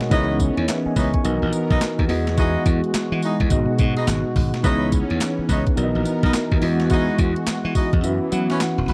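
Confident and bouncy, this dry, close-sounding new jack swing R&B excerpt at 106 BPM in C# dorian swings its 16ths over a C#m9, Bmaj7 and Emaj9 progression. An overdriven 12-bit drum machine sits up front with a thumpy kick, snare, hi-hat, handclaps and tambourine, alongside a glassy, growly slap bass, while a mellow tine electric piano heard through its built-in speakers supplies the accompaniment. A brassy, detuned sawtooth pad with chorus holds soft-attack chords, and a tight, warm horn section punctuates with octave-doubled stabs. The electric piano breaks into a fill at 7.5 s, and the kick drops out at 8.0 s as the harmony lands on F#7sus4.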